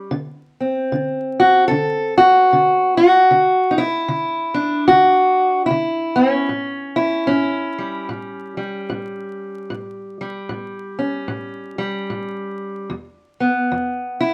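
A fingerpicked steel-string acoustic guitar sits up front in this short acoustic country blues excerpt, its dark, boxy parlour tone carrying the whole 14.3 seconds alone. The mood is swaggering and laid-back, moving at 75 BPM in 4/4 with a swung eighth-note feel. Set in A mixolydian, the guitar ranges from E2 up to A4. The harmony opens on D7, shifts to A7 at 6.5 seconds and lands on E5 at 12.9 seconds. A moderate studio reverb gives the guitar a modest sense of room, while a layer of vinyl crackle lends the recording an aged, worn character.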